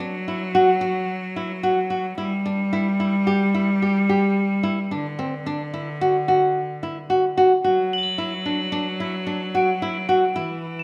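Contemporary instrumental chamber music in an uneven 5/4 metre at 110 BPM, this E minor excerpt feels hypnotic and urgent as an up-front, dark nylon-string guitar fingerpicks classical arpeggios over harmony that settles from Em to Esus2 and then Bm7. A single bowed cello carries a biting, earthy second line with light vibrato beside the guitar, and at 7.9 s crotales played with plastic mallets add a high, shimmering, bell-like texture. Everything sits in a recital hall with a reverberant 1.4-second tail.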